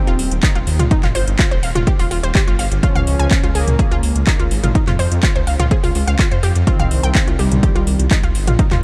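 A warbling analog synth brass melody with chorus and a diffuse ambient delay opens this hypnotic, melancholic melodic techno excerpt, alongside round, bright analog pluck arpeggios carrying chorus and tape echo, both pumping against the sidechain. A dark, rumbling detuned saw bass enters at 0.1 seconds with a house drum kit of handclaps, metallic hats and toms, and a punchy, up-front electronic kick follows at 0.4 seconds, its overdriven drums re-recorded in a large room. The brass stops at 8.0 seconds while the rest continue in a mostly dry mix to the cut.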